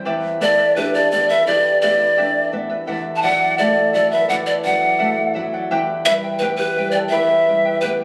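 A breathy bamboo pan flute carries the melancholic, wistful melody up front with vibrato and a soft, chiffy attack, entering at 0.4 s over fingerpicked accompaniment from a shimmering double-strung charango, a ringing concert harp second line and a warm flamenco guitar, in this brief cut from a longer Andean folk piece at 85 BPM in 2/4, moving from G/E through D/E to Em, heard through a phone in a club with moderate concert hall reverb.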